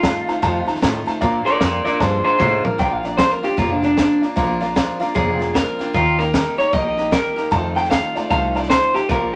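Rowdy and upbeat, this short rockabilly cut from a longer piece swings in four, moving through F7, B-flat and E-flat chords. Out front, an electric guitar through a small old amp carries the melody with a twangy, slightly broken-up bite, and after a drum fill from 2.0 to 2.8 seconds it breaks into a clean solo that runs to the end. A compact cocktail drum kit sits up close, with a punchy kick, a high-tuned snare, hi-hat and toms, its top end rolled off into a dark, smooth tone. An upright bass plays pizzicato on gut strings, sounding thumpy and woody. A picked steel-string acoustic guitar adds boxy accompaniment, while a brilliant, intimate upright piano rings high with long sustain and audible action noise. Moderate studio reverb surrounds the group, and the overall sound stays mellow at the very top.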